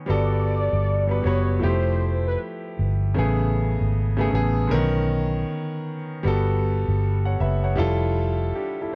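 A woody upright piano with long sustain opens this cosy, dreamy lo-fi hip hop excerpt at a swung 78 BPM, joined at 0.1 s by a round, foam-muted vintage electric bass up front and a brief velvety, detuned synth lead with chorus and vibrato that sings its short melody until 2.4 s, all drifting through Gmaj9, Fmaj9, Amaj9 and Bmaj9 chords with light reverb and a cassette-tape patina.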